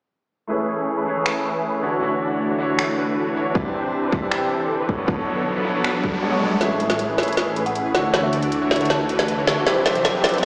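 Huge, detuned supersaw chords lead this bright, euphoric half-time future bass excerpt, sharing the opening with a brilliant grand piano, both pumping with the sidechain, soaked in tape echo and shaped by filter sweeps. Up-front trap drums with finger snaps, metallic hats and a woody snare arrive at 1.3 s, a hard-clipped electronic kick hits for a stretch, and a riser sits in the background before the build-up at 6.6 s, where a soft, hollow kalimba melody with 12-bit sampler grit and a thick, chorused saw bass join in. A lush hall reverb and the stone-room sound of a big system in a bare space, thinned by small-speaker colour, frame the cut.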